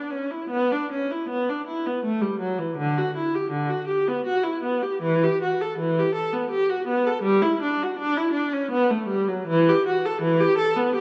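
A lone bowed viola, warm, smooth and even with vibrato, carries this grave, flowing excerpt of a classical, baroque-style suite movement in B minor, playing in a rubato 3/4 at 81 BPM across a range from D3 to A4 for the full 11.0 seconds, tuned to A4 = 442 Hz and set up front in a dark production with a moderate recital-hall reverb of 1.6 s.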